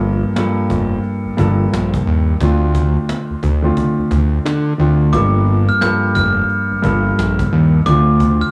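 Moody and reflective, this swung boom-bap hip-hop excerpt sets a dark, mellow concert grand piano with cassette-tape grit over a fat, saturated analog bass and a snappy, hard-handed cajon, moving between Gm9 and Dm7 until a metallic, bell-like glockenspiel played with hard plastic mallets enters with the melody at 5.1 seconds, all in a light reverb with the studio ambience of a home cassette recording.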